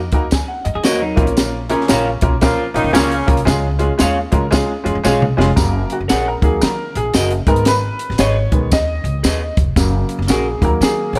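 A swung 4/4 groove at 114 BPM drives this short, uplifting slice of uptempo 1960s-style soul in F# major, carried by a woody pizzicato upright bass, a compact cocktail drum kit with a punchy kick and high-tuned snare, and a jingly vintage tambourine. A slightly detuned, up-front upright piano comps through the opening section, while a twangy guitar through a small old amp adds broken-up stabs with vibrato, a compressed clean guitar flashes a brief riff under lush chorus at 0.8 seconds, and a bright saxophone section with light vibrato plays a second line from 1.7 to 3.3 seconds. After a drum fill, the piano takes a solo from 5.6 seconds to the end, all set in light reverb.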